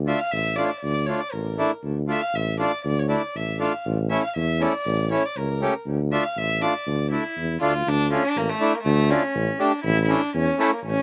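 A mellow tuba opens this festive, soulful klezmer excerpt in 2/4, its jazz-style bass line carrying a touch of vibrato. Almost at once a reedy accordion accompaniment and a single bowed violin join it, the violin singing the melody with a rich, pure tone, a soft attack and a floating, distant sul tasto quality, lifted by a slapback echo. Captured dry in the open air, the piece moves into a new section at 7.9 seconds before the clip breaks off, cut from a longer performance.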